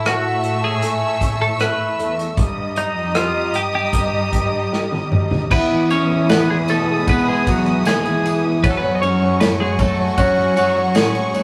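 A straight 4/4 pulse at 77 BPM carries this emotional, heartfelt pop ballad excerpt in E major, where a bright, twangy twelve-string electric guitar sings the melody up front over deep-bassed grand piano, lush woody bowed strings with vibrato, a soft-attacked cello section on bass and an acoustic drum kit with dark cymbals and a punchy kick, whose fill at 4.7 seconds ushers in a barely audible jingly tambourine at 5.5 seconds as the chords move from A and D# to Emaj7 and F#madd9, all in a rough small-room recording with a wet reverb.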